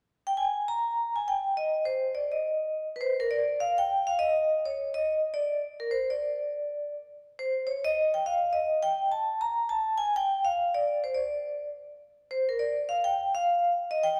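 A wet recital-hall reverb surrounds a lone vibraphone, which sits up front in what sounds like a church or concert hall. This swinging jazz fragment is sophisticated and playful, cut from a longer piece. The vibraphone plays solo from 0.3 to 14.2 seconds with medium hard mallets, and its metallic, ringing tone shimmers with fast motor vibrato. A brief opening phrase gives way at 3.0 seconds to a longer passage.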